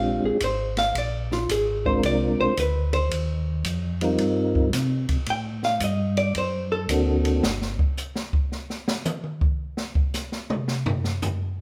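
Swinging and soulful, this is a soul jazz organ trio in Bb mixolydian at 111 BPM in 4/4, with a strong swing on the eighth notes, cut from a longer piece. A soft, flute-like tonewheel organ carries the melody with a percussive second-harmonic attack, while a second, round and mellow tonewheel organ holds down the bass line, both clean and turned through a slow rotary speaker with chorus vibrato. A dark, compressed vintage hollow-body electric guitar, picked and clean, is billed as soloing across the whole passage while it plays in the accompaniment role until 6.8 seconds. An acoustic jazz kit with dark cymbals, a high-tuned snare and a boomy kick enters at 0.4 seconds, and once the harmony drops out at 7.4 seconds it takes a drum solo through to the end. The chords move from Bb13 through Bb9, Eb6 and F13 to D7b13, and the whole trio sits up front in a natural-sounding large studio with a moderate reverb.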